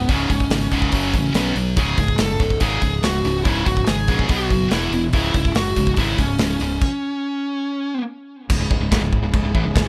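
A straight 4/4 pulse at 143 BPM drives this aggressive, relentless heavy metal fragment in C# minor, with a punchy, airy acoustic kit up front (kick, snare, hi-hat, crash and china cymbal) and a growly, overdriven fingered bass underneath. A high-gain lead guitar with tape echo carries the melody up front, while three picked rhythm guitars (a bright overdriven one, a distorted high-gain one and a very quiet double-tracked fuzz) grind out the riff over C#5, F#5, B5 and E5 power chords before reaching C# minor. After a stop from 6.8 to 8.5 seconds, a dark, lush bowed string section joins in the background with sustained chords, all within a dry, shadowy production.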